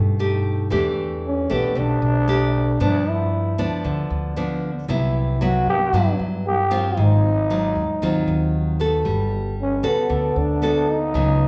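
An intimate, melancholic bossa nova moves at 115 BPM in a straight 4/4, in this short excerpt lifted from a longer piece. A fingerpicked nylon-string guitar carries the accompaniment from the start, full-bodied and classical in tone, sitting up front with audible finger squeak. Beneath it, a woody upright bass on steel strings plays pizzicato from the opening moment through to the end. At 1.3 seconds a growling trombone takes the solo melody in a jazz style, raspy, gritty and vintage in character, placed up front over the band. The harmony drifts through rich colors such as Em7, Cmaj7#11 and G#6 before settling on Gmaj9, and a generous large-studio reverb gives the feel of a band playing live together in one room.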